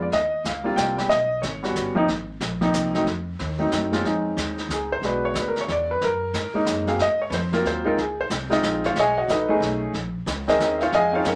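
A concert grand piano carries the melody over a woody, thumpy pizzicato upright bass on gut strings, joined almost at once by a vintage brush kit of brushed snare and hi-hat with a rolled-off top, in a late-night jazz trio swinging in 3/4. From 4.0 seconds the up-front, intimate piano takes a solo, its deep bass and audible action noise clear against the small-room drums, as lush extended chords such as Dbmaj9, Ab13 and Bbm11 pass by. A moderate studio reverb gives the trio a natural sense of space in this fragment cut from a longer piece.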